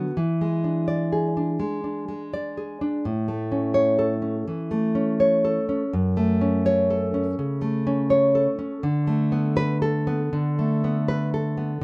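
A solo nylon-string guitar opens on an E7 chord, fingerpicked with a dark, full-bodied tone that sits up front in a light reverb. This romantic classical piece in A major moves with a rubato feel around 82 BPM in 4/4, passing through A, F#m and Bm7/D over its 11.8 seconds. The mood is warm and nostalgic, and the guitar ranges from F#2 up to D5 in this short excerpt cut from a longer piece.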